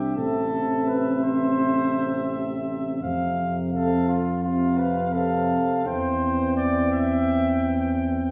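A classical brass quintet opens together at 84 BPM in a stately, triumphant C major, with a warm, close-miked trumpet singing the melody with light vibrato and a soft attack above a mellow, roomy flugelhorn second line that sounds distant yet sits up front. A dark French horn and a euphonium fill out the accompaniment in the background, while the tuba anchors the bass up front with its own light vibrato as the harmony moves from Am to F to C/E. A wet recital-hall reverb gives the whole 8.3-second excerpt a resonant, church-like glow.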